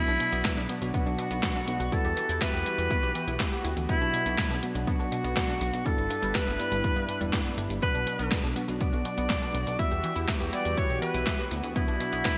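A warm alto saxophone carries the melody in this bittersweet, nostalgic italo disco cut from a longer piece, singing with vibrato and a distant, roomy quality, trailed by delay. Underneath, a gated 80s digital drum machine sits up front with cabasa, handclaps, hi-hat and a gated-reverb snare, joined by a punchy, layered electronic kick from 0.4 seconds, holding a straight 4/4 at 122 BPM in B minor. A glossy, mellow chorused synth bass grounds the low end, while a smooth analog pad sustains chords and a round, detuned analog pluck spins arpeggios with chorus and delay in the background. A bell-like tine electric piano adds clean stabs. The chords cycle through Bm, Emadd9 and G6 under a lush hall reverb, giving the whole piece a bright 1980s-style digital sheen.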